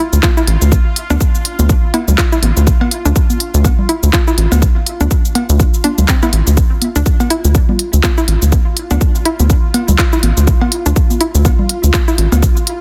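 A rubbery, resonant square bass with sidechain pumping sits up front in this hypnotic, sparse minimal techno excerpt over a swung 4/4 groove, alongside a punchy electronic kick, a house kit of cabasa, handclaps and crisp hats, tape-warm cowbell and congas through digital delay, a hollow, detuned square pluck riff coloured by chorus, cassette tape and dub echo, and a bright, bubbling texture of random filter steps with reverb in the background, all in a dry, dense, heavily limited master.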